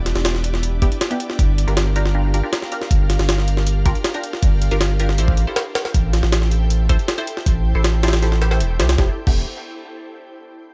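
A raw, atmospheric drum and bass cut with a jungle flavour opens straight into a drop, with an ethereal pad, a filtered dub chord stab and a saturated sub bass sounding from the very start. The pad sustains airy, detuned sawtooth chords with a slow attack and long release, bathed in ensemble chorus and reverb, while the stab delivers dark, muted chords shaped by a filter pluck and coloured with phaser, subtle chorus and dub echo. Beneath them, a thick, deep sub bass with tube saturation sits up front. At 0.1 s a sampler-style jungle kit arrives, compressed and pitched up, with a gritty edge, a thumpy kick, a high-tuned snare, hi-hat and crash. The harmony moves from Em7 through Gm7 to Am7 and returns to Em7 at 9.0 s, where the drop gives way to a new section and the pad stops at 9.1 s, all within a digital ambience.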